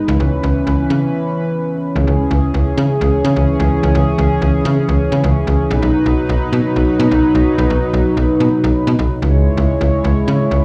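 A straight 4/4 pulse at 128 BPM drives this melancholic, cool synth-pop fragment in C# minor, where a snappy, metallic FM bass sits up front beneath a shimmering, chorused pulse-width pad holding sustained chords, pausing for a brief break from 1.0 to 2.0 seconds before the harmony moves from C#m to B and back, all set in light reverb and captured as a home recording on cassette.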